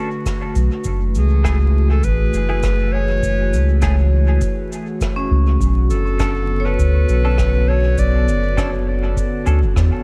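Vinyl crackle and a small-room reverb frame an echo-heavy mix in this spacious, hazy ambient dub excerpt in F# minor at 101 BPM, cut from a longer piece and moving between Bm7 and F#m9. A round sub bass with tube saturation sits up front under a deep electronic kick in the background, a rolled-off cabasa and rim click carrying dub echo, and a breathy, detuned pad with chorus holding sustained chords. A bright, soft-attack clarinet sings the melody through analog delay as clean semi-hollow guitar stabs drift in analog chorus and dub echo, while a ringing hard-mallet vibraphone enters at 5.2 seconds with delayed arpeggios.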